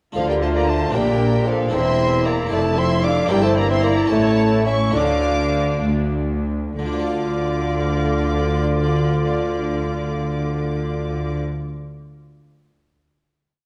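A baroque-style classical concerto movement in D minor and 6/8, driving and dramatic, moving at 62-77 BPM in dotted quarters and slowing down from 2.5 to 6.8 seconds before a held final chord arrives at 6.8 seconds. A close, expressive violin section carries the melody, shadowed in sixths and at the octave by a focused, distant second violin section, while a mellow vintage bassoon doubles the tune at the octave. Smooth violas hold sustained chords and inner lines, cellos walk and sustain the bass with the up-front double basses doubling them, and a round harpsichord rolls chords in the background, all bathed in a concert hall reverb and the warbling pitch drift of worn cassette tape.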